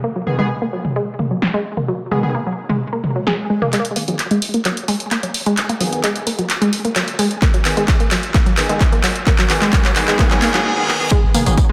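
A lush, detuned sawtooth pluck carries the riff up front in this excerpt of driving, industrial peak-time techno at 130 BPM in G# minor, its bright, warbling attack pumping against the beat and trailing delay while a filter sweeps across it. Beneath it, an edgy, nasal polysynth built on oscillator sync fires sustained stabs through chorus and analog delay, and its own filter sweep runs through the build-up from 3.7 seconds. A tape-colored analog drum machine drives the groove with handclaps, hi-hat, snare, tambourine and toms, each muffled by a low-pass filter, and rolls into a long fill through the build. A layered electronic kick lands up front at 7.4 seconds, while a very quiet swell, riser and reverse cymbal rise beneath the mix. At 11.2 seconds a growling, buzzy, overdriven 808-style bass hits a low G#, all of it bathed in a dreamy plate reverb.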